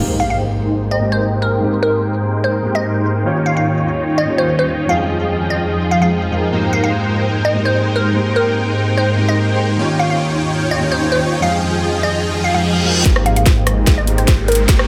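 Playful and lush, this future bass excerpt moves in a half-time feel, cut from a longer piece. A huge, bright supersaw riff sits up front, pumping against the sidechain under a low-pass filter sweep, while a dark, intimate grand piano with audible action noise carries the accompaniment and a glassy, crystalline wavetable pluck sings the melody through chorus and digital delay. A faint fingerpicked harp rings through the opening 2.4 seconds alongside an impact, and a very quiet, shimmering ambient pad drifts in at 1.6 seconds with ethereal, granular sustained chords. The harmony circles through Abmaj9, Eb7 and Fm7 before a reverse cymbal signals the shift at 13.1 seconds. There a build-up begins: a thick, saturated detuned saw bass, a hard-clipped electronic kick and a trap kit with a sharp snare and metallic hats arrive with a drum fill and riser, as the pluck gets its own filter sweep, all set in light reverb.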